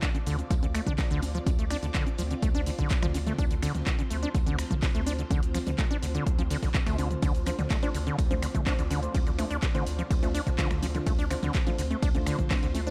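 A squelchy, resonant sawtooth acid bass riff drives this gritty, hypnotic acid house excerpt at 125 BPM in D minor pentatonic, riding on a punchy, up-front electronic kick, a tape-warm analog drum machine of congas, finger snaps, handclaps, hi-hat, ride, shaker and toms, and a very quiet acoustic kit adding hi-hat, snare and tambourine from a bright stone room. A deep, saturated sine sub bass pumps beneath from 0.3 seconds, while a lush vintage string machine holds a Dm7 chord in the background with phaser, ensemble chorus and sidechain pumping. At 7.5 seconds a soft, mellow chord stab with lush chorus and tape echo joins, all within a dark production under light digital ambience.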